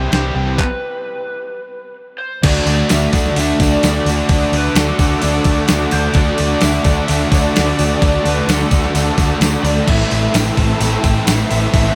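Hazy and dreamy, this shoegaze-leaning rock excerpt sets a lo-fi overdriven lead guitar with tape echo over a slightly broken-up arpeggiated guitar, a biting riff guitar bathed in reverse reverb, a dark fuzz guitar thickened by analog chorus, a round hollow-body fingered bass and a thumpy, up-front 8-bit drum machine with handclaps, until a detuned, warbling analog pad, a faint double-tracked crunchy guitar and a jingly tambourine join at 2.4 s after a brief stop, as the chords shift from Cmaj7 to D and later to Am.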